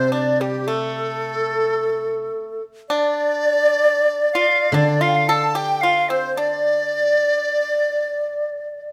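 Chinese traditional music for a small chamber ensemble, this brief excerpt has a wistful, tender mood and a free rubato feel. The end-blown bamboo xiao carries the melody from the start to 8.9 s with a bright, airy, close-miked tone, vibrato and soft attacks. A large bamboo dizi plays a second line in the same register, its buzzing membrane and tongued notes sitting up front with lifted highs and vibrato. The pipa adds a lower second line, dry and percussive under fingerpicks, while the guzheng supplies a ringing, silvery accompaniment low in pitch until 7.2 s. A moderate recital hall reverb gives the ensemble a natural sense of space.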